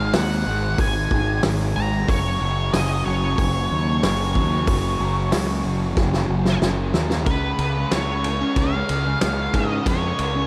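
Hazy and wistful, this short cut from a longer shoegaze and dream pop piece moves at a straight 92 BPM in 4/4, steeped in a lush hall reverb that gives the whole mix a dreamy, soaked glow. A double-tracked fuzz guitar carries the riff in the low-to-middle register, picked and distorted with a subtle chorus, while an octave-fuzz lead guitar sings the melody higher up, its dark tone trailed by analog delay. Beneath them, a growling fingered electric bass sits up front with overdrive. A loose indie drum kit with a fat snare, tight kick, dark cymbals and a rolled-off top keeps hi-hat, snare, kick and ride moving. The harmony drifts from G#5 to F#5 before a drum fill from 6.0 to 7.3 seconds opens into a new section built on C#7 that carries the fragment to its close at 10.5 seconds.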